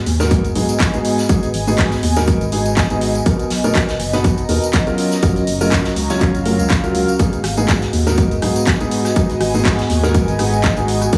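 Soulful and bittersweet, this brief piano house excerpt sets an up-front baby grand piano riff with dub echo and sidechain pumping over an overdriven, punchy electronic kick, a house kit of handclaps, bright hats and rim clicks, a hollow, organ-like FM bass that pumps beneath, a soft background brush kit on hi-hat and snare, bright tambourine and congas played with soft hands, and an airy, breathy pad shimmering with chorus and phaser, all moving through G#m7, Bmaj7 and F#maj7 in a small, lightly reverberant room.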